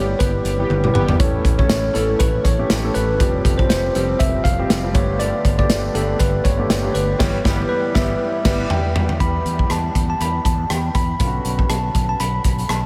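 Dramatic and urgent, this short cut from a longer 1980s-style pop piece moves in a lightly swung 4/4 under a dreamy wash of huge ambient reverb. A bell-like, clean tine electric piano carries the melody through tape echo, while a concert grand with audible action noise, deep bass and long sustain fills out the accompaniment beneath it. A bright, punchy fretless electric bass, treated with lush chorus, anchors the low end. The up-front studio drum kit, with a punchy kick, medium-tuned snare, rim click, hi-hat, toms, tambourine and crash cymbal, sits in a pumping room sound and delivers fills alongside band accents at the opening and again from 7.2 to 9.2 seconds. Very quiet analog synth brass, fat and detuned with a warbling vintage sawtooth edge and a filter sweep, adds stabs only at those two accented moments. The harmony moves through Em/G, A, Fsus2 and Gadd9 before settling on Em and Bmadd9 in the closing stretch.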